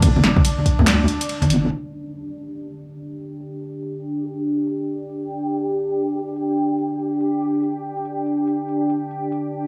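This brooding, meditative deep dubstep fragment opens on a drop in a half-time swing, with a moody, detuned sawtooth pad up front, a saturated square-wave wobble bass and an overdriven electronic kick, joined just after by low-tuned congas carrying dub echo. The kick, congas and bass are gone by 1.7 seconds, leaving the punchy, overdriven house kit of handclaps, filtered hi-hat, ride and snare under a filter sweep while the pad sustains. From 3.2 seconds a reversed, granular texture swells in, bright and dreamy, and a huge ambient reverb hangs over the whole mix.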